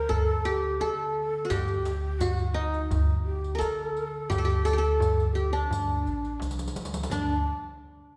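Heard in the lingering reverb of a church or concert hall, this short excerpt from a longer Arabic maqam ensemble piece has a soulful, melancholic cast in a straight 4/4. The bright-edged, plectrum-plucked qanun carries the melody up front beside a woody pizzicato upright bass, while a breathy end-blown ney with vibrato sings a second line in the background. A deep, crisp metal-shell darbuka sits behind them, the riq's bright jingles join at 1.5 s, and a drum fill arrives at 6.4 s.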